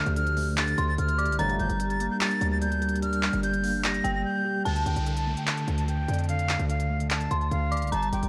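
Heard through worn, warbling cassette tape with drifting pitch and light reverb, this eerie, menacing half-time trap fragment is built on a punchy, up-front 808-style bass and a crisp electronic trap kit of handclaps and hi-hats, which drops out briefly at 4.2 s. A breathy, reedy jazz flute with vibrato and tape echo carries the melody over a mellow tine electric piano heard as if through built-in speakers. A dark, inharmonic FM bell adds a second line, a nostalgic, lo-fi pad holds detuned chords in the background until 4.6 s, a hollow sawtooth polysynth stab with phaser lands at 1.4 s, and a faint downlifter drifts in from the background in the second half.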